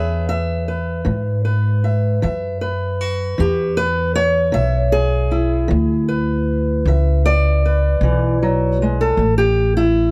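Gritty and laid-back, this acoustic country blues fragment rolls along at 52 BPM in a slow 12/8 with a straight feel, tuned slightly sharp to A4 = 445 Hz, as an up-front fingerpicked parlour steel-string guitar with boxy, old-string character carries the melody over an equally close pizzicato upright bass with woody steel strings, both sitting on E before shifting to A5 at 9.2 seconds, all captured in a dry, close 1970s-style studio sound with a faint mains hum.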